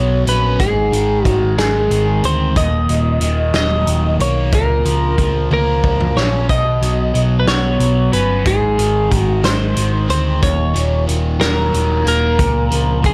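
A clean, compressed twelve-string electric guitar carries the melody up front with a tape echo, setting a moody, bittersweet tone for this indie rock excerpt in a straight 6/8. Beneath it, a bright, double-tracked overdriven guitar plays a crunchy riff through a phaser, while a dark, round hollow-body bass anchors the low end. A loose, gritty acoustic drum kit with a punchy kick and rolled-off top joins at 0.3 seconds and adds a fill around 5.5 seconds, all set in light reverb over chords moving through Ab, Ebm and Bbm/Db.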